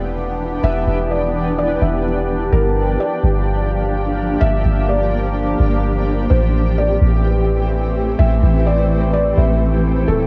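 A shimmering ambient pad, ethereal and wave-folded with a granular, octave-up sheen, holds sustained chords through chorus, its own reverb and cassette tape, moving from Em7 to Gm7 at 2.5 seconds and Am7 at 6.3 seconds in this hazy, spacious cloud-rap fragment at 127 BPM in a half-time feel. A felt-muted upright piano carries the melody with a mellow, intimate tone, audible action noise and analog delay, while a deep, round 808-style bass with transformer saturation sits up front beneath it. The home cassette recording has a light reverb that adds to the hazy atmosphere.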